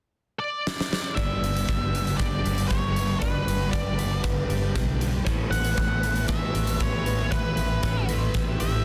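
Shoegaze and dream pop rock at 117 BPM in a straight 4/4, this hazy, wistful excerpt opens with a dark octave-fuzz lead guitar melody at 0.4 s, joined by a huge arena drum kit whose fill starts at 0.7 s, with fat snare and punchy kick sitting up front in a pumping hall. At 1.2 s the rest of the band arrives over Gadd9 moving to Asus2: a round, foam-muted vintage bass, a crunchy overdriven guitar riff with reverse reverb, a fuzz guitar riff with lush chorus, lo-fi arpeggios from an electric guitar through a small old amp, and a swirling, warbling phased string machine holding bright sustained chords. The dense, heavily limited master wraps the layers in studio reverb.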